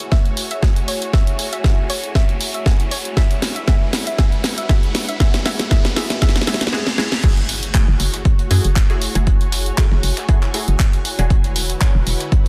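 Deep house at 118 BPM in F# minor, moody and smooth, where a build-up of riser, reverse cymbal, house drum kit with cracking snare, punchy electronic kick, airy breathy pad, muted filtered dub chord stabs, lush bowed strings and a soft round pluck melody gives way at 7.2 seconds to a drop with an impact, a very quiet gritty sampler-style kit, and a hollow, bouncy FM bass up front from 7.9 seconds, all moving between F#m9 and E13 in a dense, heavily limited mix with little reverb.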